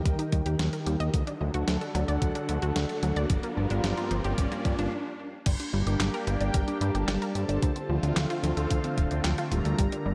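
Bathed in light reverb and a digital ambience, this moody, cinematic synthwave excerpt moves at 111 BPM in a straight 4/4, centered on G minor. A swirling, airy phased analog pad holds sustained chords with phaser, chorus and sidechain pumping, and a filter sweep runs through its opening 5.5 seconds. Beneath it, a fat, thick analog bass sits up front with a detuned sawtooth-and-square tone and its own sidechain pumping. In the background, a lush, warbling unison pluck spins arpeggios through a digital delay, while mellow synth brass, round and dark with chorus and vibrato, punctuates the harmony with stabs. A background riser sounds from 0.4 to 4.9 seconds, and a brief stop follows before the second half settles on Gm and moves to Dm7, after an opening progression of Eb, D and Gm7. The beat pairs a thumpy, overdriven electronic kick with a clean 12-bit drum machine supplying a medium-tuned snare, handclaps, hi-hat and crash cymbal, both carrying a small-room character.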